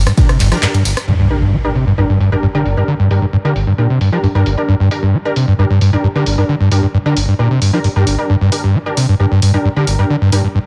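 A screaming, squelchy acid line of resonant distorted sawtooth with chorus and a filter sweep from 1.1 seconds drives this dark, intense peak-time techno cut at 133 BPM in G minor, over a thick overdriven sub bass that sounds only until 0.5 seconds, a faint, smooth acoustic jazz kit heard briefly at the start, a punchy tape-warm analog drum machine of handclaps, hats, ride, rim click and tambourine pumping under sidechain, detuned unison rave stabs with dub echo and cassette grit, and an electronic impact at 1.1 seconds, all in a light digital ambience.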